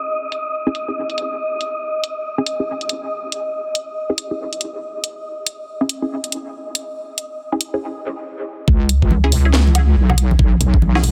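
Deep dubstep with a dark, heavy half-time swing, this excerpt opens on muted, wave-folded dub chord stabs carrying phaser and dub echo, alongside an airy, breathy wind-like noise texture and a filtered garage kit of handclaps, hi-hat, cracking tape-warm snare and woodblock. After a brief break at 7.8 seconds, the drop lands at 8.7 seconds as a saturated, detuned wobble bass with chorus and an overdriven, knocking electronic kick push to the front. Bright, close and dry congas join in the background at 9.1 seconds, all under light reverb and a dense, heavily limited master.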